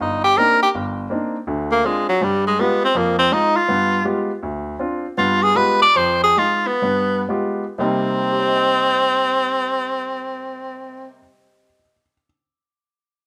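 Moderate studio reverb frames this cool, swinging jazz fragment cut from a longer piece, where an up-front, bright tenor saxophone with vibrato and plate reverb plays the solo melody while a clear, polished baby grand piano accompanies close beside it, the pace slowing between 4.4 and 7.8 seconds before the saxophone stops at 11.1 seconds and the piano rings on to 12.2 seconds.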